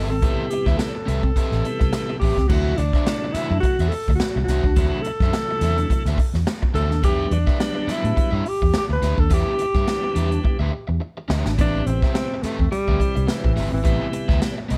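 A breathy alto saxophone carries the melody up front in this driving, sly funk excerpt at 106 BPM, its jazz-styled subtone lines coloured by light vibrato and scooped notes over a swung sixteenth-note feel in A dorian. Beneath it, a dark, round, foam-muted fingered electric bass anchors the groove, a crunchy overdriven picked guitar fills out the accompaniment, and a piping tonewheel organ adds lightly overdriven stabs through a slow rotary speaker. A polished, airy big-band drum kit with a punchy kick and medium-tuned snare also sits up front in a light reverb, and a drum fill from 10.4 to 11.6 seconds leads back to the opening Am9.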